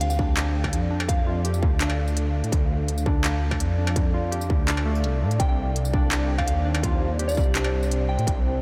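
A heavy, tense half-time drum and bass passage at 167 BPM in D phrygian opens with a soft, pure FM synth bell melody sitting in the background, a deep, moody ambient pad with chorus, reverb and grainy 12-bit sampler grit pumping against the beat, a rumbling, detuned sawtooth bass placed up front, and an industrial drum kit of handclaps, smooth hi-hats, struck metal and tambourine. At 0.2 seconds a distorted electronic kick drum arrives alongside a warbling, lo-fi pluck whose chorused, tape-echoed arpeggios drift through a filter sweep with a noisy edge. The bell falls away at 1.4 seconds, leaving the slow-blooming pad, beating bass and pluck to carry the D minor harmony. At 5.4 seconds the chords move to C minor and the gentle bell returns with its tape echo. The mix sits in a light digital ambience, with the kick and bass dominating this short cut from a longer piece.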